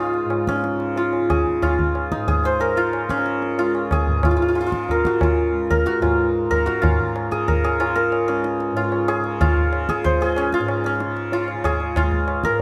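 A bright, hammered santur rings up front, carrying a devotional, radiant melody in raga bilaval on Db in this short passage cut from a longer Hindustani classical piece. Beneath it a mellow, buzzing tanpura drone shimmers softly, while high-tuned tabla, close and dry, drives a straight 4/4 pulse that starts around 185 BPM and keeps speeding up. Light reverb frames the playing, and the music moves into a new section at 6.8 seconds.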